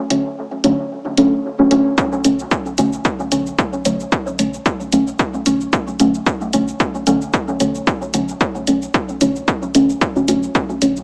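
The recording has a boxy, small-speaker character, bathed in a moderate spring reverb that lends this meditative, nocturnal dub techno fragment a late-night haze. Up front from the start, a deep, mellow chord stab sounds dark and faintly nasal, its plucky attack decaying while chorus, phaser, dub echo and sidechain pumping colour each hit, moving from Dmaj7 to Bm7 at 2.0 seconds. An overdriven electronic hi-hat and cabasa also begin at once, their analog grit re-recorded in a large room and carrying a gentle swing on the sixteenths. At 2.0 seconds a punchy, overdriven analog kick drum arrives up front, and a soft, round dub sub bass joins at 2.2 seconds, sitting low in the background with tube saturation and its own sidechain pumping. Cut from a longer piece, it settles into a steady, hypnotic groove that holds until the end.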